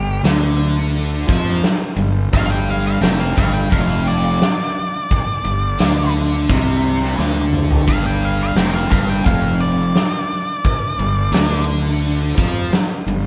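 In a straight 4/4 at 87 BPM, a huge arena drum kit with a punchy kick and medium-tuned snare rings naturally in a big room and drives this brooding, gritty blues rock power trio and southern rock excerpt, with a drum fill at 7.2 seconds, while a biting, double-tracked overdriven guitar picks a low riff up front over a growly fuzz fingered electric bass, a dark, distorted octave-fuzz lead guitar plays a picked melody over a G5 chord until 11.6 seconds, and the whole band, recorded live in one room, sits in moderate studio reverb.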